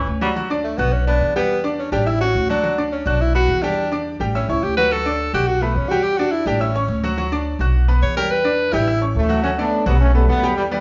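A bright, brilliant grand piano and a woody, thumpy upright bass open this joyful, sunny Latin excerpt together at 0.0 seconds, setting up a brisk, straight four-beat groove. The piano sits up front with an intimate, present sound, short sustain and audible action noise, while the pizzicato bass on gut strings adds a dark, acoustic low end. At 0.6 seconds a tenor saxophone takes a pop-style solo, its vibrato-laced tone shining over a repeating cycle of D, Bm or B5, Em7 and A. At 9.2 seconds a close-miked trombone section enters with a punchy, light-vibrato ensemble line for the closing stretch. The band plays live in one room with a generous large-studio reverb, and the top end is rolled off for a mellow overall sheen. The clip is cut from a longer piece.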